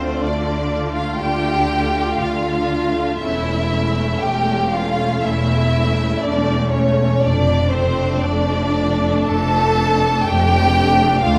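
Unhurried rubato at 60 BPM in 4/4 carries this elegiac, solemn slow movement for string orchestra in D minor, cut from a longer piece and moving from Dm through A/E to Dm/F. Up front, a clear, focused violin section sings the melody with vibrato over a smooth-topped second violin line. A viola section colours the accompaniment with expressive portamento, and close, even cellos join a rich double bass section on the bass, all set in the wet reverb of a scoring stage with vinyl crackle running through the 11.4 seconds.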